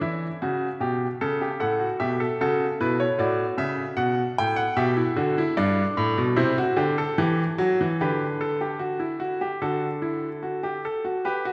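A clear grand piano opens this baroque-style three-part fugue, heard alone from 0.0 seconds in a classical setting that feels stately yet lively. The tempo sits at 75 BPM in a straight 4/4, and the piano spans G2 to G5, its natural, up-front tone marked by short sustain. Its harmony moves from E minor through A, F-sharp minor over A, G over B and C, reaching a Dsus4 that settles onto D near the close. A wet concert hall reverb with a 2.1-second decay surrounds the instrument, giving the sense of a church or concert hall. The passage is cut from a longer piece, ending as the piano stops at 11.5 seconds.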